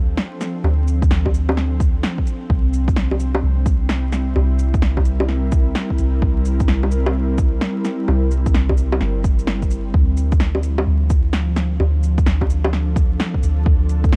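A deep, overdriven electronic kick sits up front, entering at 1.0 seconds in this rainy, wistful future garage piece, cut from a longer track, at 129 BPM in 4/4 with a 64% swing on the sixteenths. Beneath it, a soft, round 808-style sine bass with a fast attack and dark decay moves in D minor, pumping against the sidechain, and a layered kit of punchy snare, shaker and bongos, also overdriven, arrives at 0.2 seconds. An ethereal, airy pad built from detuned sawtooth and triangle voices in unison holds mellow sustained chords with a slow attack and long release, softened by ensemble chorus and reverb and breathing with the same sidechain pumping. The harmony drifts from Dm7 to C7 and back to Dm7. A layer of vinyl crackle adds a dusty haze.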